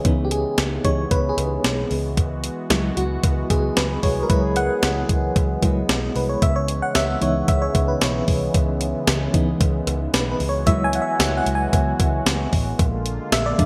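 This 1980s-style pop excerpt moves at 113 BPM in C# minor with an urgent, nostalgic mood, its FM electric piano up front with tremolo, a fast attack and a noise layer as it takes the lead over chords from C#m7 through Eadd9 to a closing A#7 at 12.8 seconds. Beneath it, a smooth, detuned analog pad holds sustained chords with chorus and a warbling sawtooth character. A clean 12-bit drum machine bathed in gated reverb, with a thumpy kick and a medium-tuned snare, drives hi-hat and tambourine. It is joined at 0.1 seconds by a dark, round, foam-muted picked bass and a very quiet metallic cowbell, all set in bright digital plate ambience.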